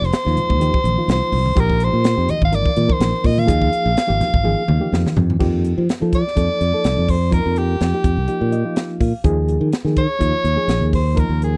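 Funky and bright, this electric jazz fusion excerpt sets a clear, up-front soprano saxophone melody over a growly fingered electric bass, a reedy, worn electric piano with light overdrive and fast tremolo, a crisp drum kit with a high-tuned snare and punchy kick that fills at 4.4 seconds, and very quiet, thick-skinned congas that play from 0.4 to 5.4 seconds, all caught in a dry, close 1970s-style studio sound, with the electric piano adding its own fill at 8.3 seconds.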